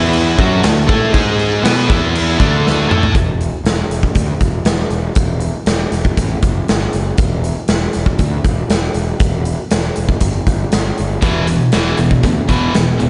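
A big arena sound fills a recital hall space with moderate reverb, its top end rounded off so the mix feels dense and heavy. This powerful, energetic hard rock passage in straight 4/4 is cut from a longer piece. It opens with two guitar riffs: an up-front overdriven electric guitar with a crisp slapback echo, and a scooped, high-gain distorted guitar sitting in the background. A very quiet, gritty tonewheel organ sustains thick chords beneath them, with key click, percussive attack, chorus vibrato and a slow rotary speaker. A fuzz-laden picked bass drives through the whole passage, and a punchy acoustic kit with a medium-tuned snare, bright cymbals, hi-hat and toms throws in a fill at 2.6 seconds. At 3.1 seconds the guitars and organ drop out, leaving bass and drums to carry the groove until both guitars return at 11.2 seconds.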